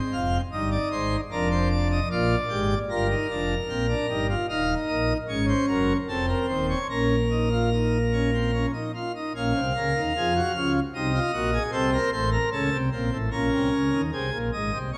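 A pipe organ on full plenum with brilliant mixtures and romantic voicing sits up front, spanning from a deep Eb1 to F5 in a contemplative, serious baroque-style three-part fugue at 75 BPM in 3/4, settling into Bb minor from 4.5 seconds and moving through chords such as F7, Cdim and Am before returning to Bbm. It rings in a wet concert hall reverb in this short passage cut from a longer piece.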